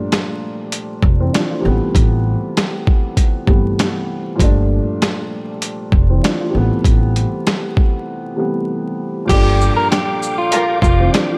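Dry and dusted with vinyl crackle, this gritty, dark boom-bap hip-hop excerpt rides a mellow, slightly detuned upright piano with a cassette-tape tint, overdriven, pitched-down sampler drums with a thumpy kick, and a woody pizzicato upright bass from 1.0 s; then, after a break, a slightly broken-up electric guitar melody and a reedy background tonewheel organ with fast rotary speaker arrive at 9.3 s, joined by a brief, lush bowed string stab touched by tape echo at 10.5 s.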